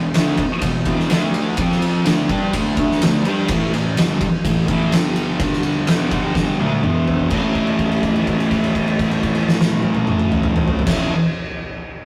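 Blues rock power-trio playing with a southern rock edge, this driving, swaggering excerpt is led by a thick, double-tracked fuzz guitar riff sitting up front over power chords, backed by a dark, round, overdriven fuzz bass tucked in the background. An oversized, low-tuned acoustic drum kit with a punchy kick, fat snare, dark cymbals and a gritty, pumping stone-room sound hits a fill around 6.4 seconds before the harmony lands on an A chord at 7.3 seconds, where a held note carries the new section. The whole take has the rough, saturated feel of a rehearsal room with a short, moderate reverb.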